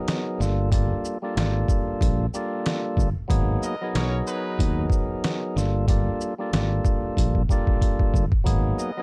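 A percussive tonewheel organ opens this tough, moody boom-bap hip-hop excerpt, its fat, lightly overdriven tone sitting up front through a stopped rotary speaker and a cassette-tape haze, with filtering trimming both ends of its sound. A sampler-style drum kit arrives almost at once, pitched down, compressed and gritty, with a thumpy kick, a medium-tuned snare, hi-hat and shaker swinging at 93 BPM in 4/4. A fretless electric bass enters at 0.4 seconds with a warm, direct tone, following the shifts between Gm9 and G#m9. A clear trumpet section with light vibrato adds jazz-style stabs from 3.6 seconds, filtered and trailed by tape echo, set back beneath the other parts. A drum fill runs from 7.2 to 8.5 seconds before the trumpets return briefly at the close of a dark production with little reverb.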